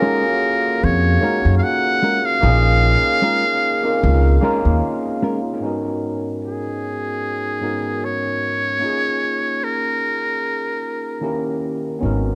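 A muted trumpet sings a breathy, whispered melody with light vibrato and scooped notes from the start, over a gritty, barky overdriven tine electric piano bathed in lush chorus and a dark hollow-body jazz guitar second line with tape echo that drops out at 5.4 seconds, while a woody pizzicato upright bass thumps up front from 0.8 seconds in this introspective, soulful neo-soul R&B excerpt at 75 BPM in G# dorian, with a 16th-note swing and light reverb.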